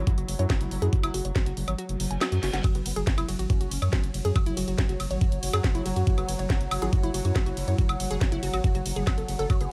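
A knocking, up-front electronic kick drives this psychedelic trance excerpt, dropping out from 1.8 to 2.6 seconds while a background reverse cymbal sounds at 2.0 seconds, beneath a round, deep analog bass, a drum and bass kit with cracking snare and bright hats, a woody wave-folded pluck riff with chorus and digital delay, a pulsing gated texture holding sustained reverberant chords, a nasal vowel-sweep wobble bass line in the background, and, from 3.4 seconds, a nostalgic, lo-fi warbly tape-like pad, all in a dry, driving mix.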